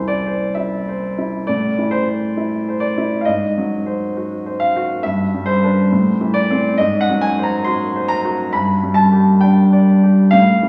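Lyrical and passionate, this romantic character piece for solo piano unfolds in a flexible rubato over a two-beat metre, tuned slightly low at A4 = 436 Hz. A baby grand with a warm, natural tone sits up front and ranges from C2 up to C6, while a wet recital-hall reverb and a sense of distance in the room lend it a glowing halo. The harmony moves from C through A minor and A-flat seventh to G within a 10.7-second fragment cut from a longer piece.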